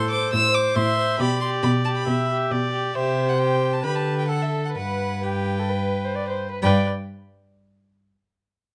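In a straight 4/4 at 126-140 BPM, this spirited, graceful classical-period string quartet movement in G major, cut from a longer piece, sets a rich, close first violin melody above a dark, distant second violin line, with a viola of airy bow and nasal edge supplying accompaniment and a warm cello holding the bass up front, all four bowed on gut strings in period style with a reedy colour under light reverb.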